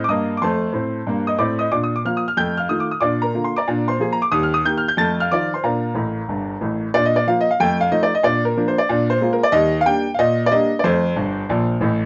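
A bright, brilliant grand piano plays solo stride jazz in Bb major at a brisk 184 BPM with a playful, swinging feel, sitting up front with short sustain over light reverb, its sound coloured by worn, warbling cassette tape with pitch drift and a dulled top end, and it tosses off quick fills at 6.0 and 11.2 seconds in this brief cut from a longer piece.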